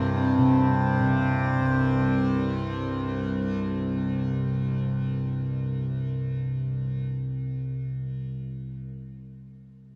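In free time, this brief, spacious and peaceful meditative world excerpt sets a mellow, buzzing tanpura drone up front from 0.0 to 8.8 seconds, while a glassy, ethereal glass harmonica with a slow attack and shimmer reverb sounds softly in the background only until 0.5 seconds, all within a vast, echoing space washed in huge ambient reverb.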